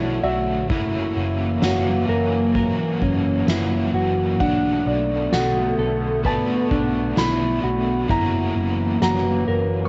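A hazy home cassette recording with moderate room reverb and a dulled top end opens this slow, haunting dream pop passage at 65 BPM in 4/4, cut from a longer piece. A felt-muted upright piano carries the melody in a soft, intimate voice coloured by tape echo, while a warbling, nostalgic pad holds sustained chords with a slow attack, detuned shimmer, chorus and phaser. Beneath it, an overdriven, compressed electric guitar supplies accompaniment through tremolo and ensemble chorus, and a mellow, clean, fingered electric guitar traces dark arpeggios with subtle chorus and echo. A round, punchy hollow-body short-scale bass anchors the low end, and a soft-mallet drum kit with a boomy kick, fat snare, ride cymbal and tambourine enters at 0.7 seconds in a big-room sound. The harmony drifts through F#m7/B, F#7 and Bm7, and a very quiet, metallic vibraphone struck with hard mallets rings a bright A4 from 5.3 to 7.4 seconds, deepening the melancholic mood.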